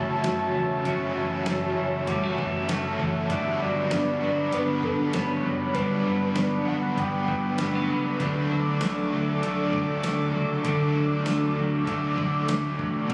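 Heard through a phone in the room, this dream pop excerpt sits in a wet hall reverb with an extra layer of club ambience, giving it a hazy, distant glow. Up front, a warbling, nostalgic pad built from detuned sawtooth and triangle tones holds slow-attack chords through chorus and phaser, while a dark, clean electric guitar picks arpeggios bathed in lush chorus and tape echo. Beneath them, a bright, double-tracked stack guitar adds overdriven accompaniment with tremolo and a subtle chorus, and a round, punchy, foam-muted fingered bass anchors the low end. A gritty, compressed sampler-style kit enters at 0.2 seconds with a thumpy kick, medium-tuned snare, hi-hat, ride and tambourine. The harmony opens on F#m7, and as it shifts to Gmaj7 at 3.3 seconds a soft, octave-layered synth lead with a sub octave and gentle vibrato carries the melody until 7.6 seconds, before the progression settles on D, leaving a dreamy, blissful mood.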